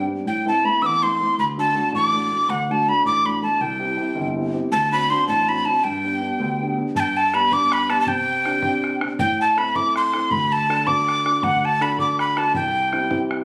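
Bright and lively, this Celtic folk jig in G major moves at 107 BPM in 6/8. A breathy, mellow metal whistle sits up front with vibrato, tongued chiff and plate reverb, carrying the melody over a warm, intimate grand piano accompaniment with audible action noise and short sustain, while a boomy, dry bodhran enters in the background at 7.0 s, all caught by a phone in a compressed studio room with moderate ambience.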